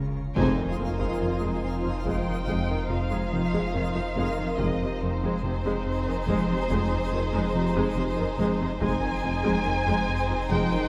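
Veiled, con sordino strings sit in a moderate scoring-stage reverb on this tense, ominous suspense film cue in F minor, moving at 71 BPM in a straight 5/4. A muted chamber violin section carries the melody over a lush symphonic violin second line, with violas, distant cellos and very quiet double basses beneath, all bowed with vibrato. A smooth, saturated synth bass riff and a deep, punchy sub bass drone anchor the low end, while a twinkling granular texture holds sparkling chords. At 0.4 seconds a huge, dark impact lands on an Fm7 with a very quiet, close and dry taiko ensemble, and a ringing concert harp enters in the background at 0.8 seconds.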